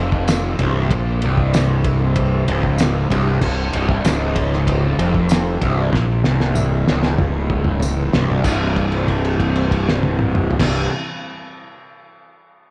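A double-tracked fuzz guitar riff, distorted and phased, leads this trippy, dark psychedelic rock fragment at 95 BPM, over round overdriven fingered bass, a muffled cloth-damped drum kit with a fat snare and a fill from 5.9 seconds, a jingly tambourine in the background, and very quiet sawtooth string-machine cello chords entering at 3.4 seconds, all set in a moderate echo-chamber reverb, with a held note arriving at 8.5 seconds.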